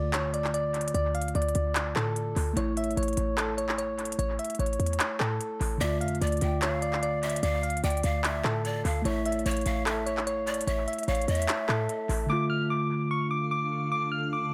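Trap-leaning hip hop at 148 BPM in a half-time feel, this dark, menacing cut in D harmonic minor pairs soft, round synth keys carrying the melody up front with chorus and analog delay over a mellow tine electric piano, a punchy, tight 808-style bass and crisp-hatted trap drums with handclaps, while breathy cane pan pipes with vibrato and chiff add a second line from 5.8 s and a cloudy granular pad drifts in the background from 13.2 s, all in a dry, echo-heavy mix moving between Dm and A.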